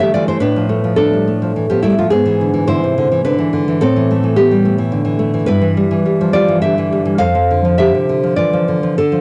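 Carrying the character of a home cassette recording in a moderate studio reverb, this brief cut from a longer romantic piece for solo classical guitar moves at 105 BPM in a rubato 3/4, its wistful, intimate mood carried by an up-front, fingerpicked nylon-string guitar with fresh strings, ranging from F2 to F5 as it moves from Bm7b5/A through E7/G#, Am and Em/G to Dm/F by 7.2 seconds.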